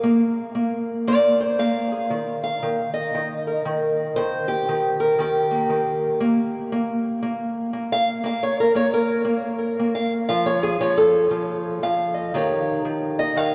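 Acoustic country blues with a rollicking, gritty mood, this excerpt from a longer piece features a single fingerpicked steel-string acoustic guitar playing alone from 0.0 to 13.5 seconds. The guitar has a boxy, parlour-sized character and sits up front, ranging from Eb3 up to F5 over a swung eighth-note feel in 4/4. The instrument is tuned slightly flat of standard pitch, with A at 437 Hz. The harmony opens on a Bb5 before settling on Eb at 2.1 seconds, passes through a chordless stretch, then leans on an Faug and lands on Eb7. A long, wet cathedral reverb from a church or concert hall surrounds the playing, lending the fingerpicked lines a lingering, spacious halo.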